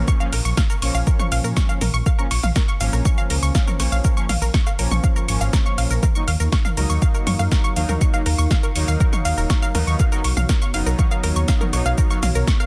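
A lush unison pluck spins sidechain-pumped arpeggios over a rumbling, beating detuned saw bass, fat wave-folded synth brass stabs and a very quiet downlifter as this hypnotic, dark melodic techno fragment opens, with a deep kick and a deep house kit of punchy snare, metallic hats, rim click, shaker and toms, both overdriven, joining at 0.1 seconds in a dry, dense, heavily limited mix, until a moody, ring-modulated analog pad enters in the background at 6.0 seconds.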